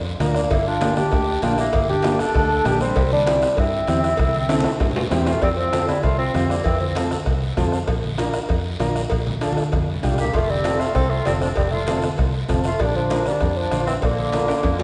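A round, dark fingered electric bass opens this joyful, danceable cumbia at 195 BPM in F major, joined almost at once by hard-handed congas, a soft-beatered bombo, ringing cowbell and timbales, raspy guiro and a vintage combo organ with heavy vibrato, the percussion sitting in the background. A mellow bassoon carries the classical-style melody while a clear, distant jazz-style clarinet with scooped notes traces a second line; both fall silent from 7.1 to 10.2 seconds before returning, and drum fills mark the phrase endings. The mix is bathed in a lush scoring-stage reverb with a hall-like ambience and a softened top end.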